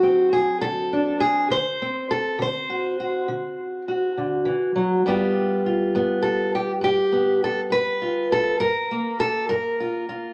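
A dark, boxy fingerpicked parlour steel-string acoustic guitar sits up front and plays alone in this laid-back, soulful acoustic country blues fragment in D mixolydian, moving in a slow 12/8 at 68 BPM over D7, then G7 at 5.1 seconds and Gm7 at 8.6 seconds, with moderate studio reverb and lossy compression artefacts across its roughly 10-second span.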